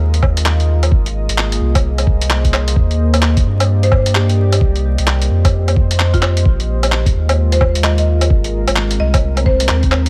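Rainy and nocturnal, this future garage excerpt moves at 130 BPM in 4/4 with a 62% swing on the sixteenths, as a deep, dark sawtooth pad with chorus and reverb holds sustained chords from Bb7sus4 through Abadd9, Ebmaj7 and Cm7, pumping against a round, up-front sine sub bass. Muffled, pitched-down sampler-style drums carry handclaps, hi-hat and woodblock beside a thumpy overdriven kick, while a woody, buzzing marimba enters at 3.8 seconds with 12-bit grit and dub echo. The mix is dry, laced with prominent vinyl crackle.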